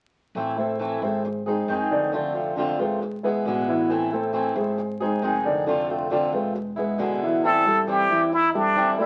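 Heard through the crackle of a very old 78 rpm record in a moderate studio reverb, this short cut from a longer Latin piece moves at 136 BPM in A harmonic minor with a nostalgic mood, cycling through Am, G#, F6 and E7. A boxy fingerpicked swing-style acoustic guitar and dark, mellow concert grand piano arpeggios sit up front, while a woody, thumpy pizzicato upright bass stays in the background. At 7.4 s a bright trumpet with a plunger mute takes the solo with wah-wah tone, vibrato and a soft attack.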